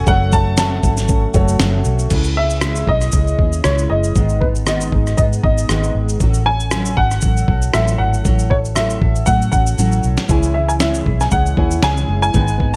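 Recorded in a small room, this short cut from a longer acoustic pop piece moves at an easy-going 117 BPM in 4/4 with a light sixteenth-note swing, its mood heartfelt. A worn, slightly detuned upright piano carries the melody throughout, while a second, clearer upright piano adds accompaniment for the opening moments and returns at 10.3 seconds. A double-tracked, full-bodied steel-string acoustic guitar fingerpicks under everything, joined early and again near the close by a very quiet nylon-string guitar playing arpeggios, and a faint, blurred granular pad hangs over the first two seconds. Up front, a gritty, compressed sampler-style drum kit with a thumpy kick, fat snare, rim clicks, shaker and crash cymbal drives the groove, with a fill just before 10.3 seconds. Beneath it, a dark, foam-muted fingered electric bass gives a round, punchy low end as the harmony moves through F#m, C#m and G#m.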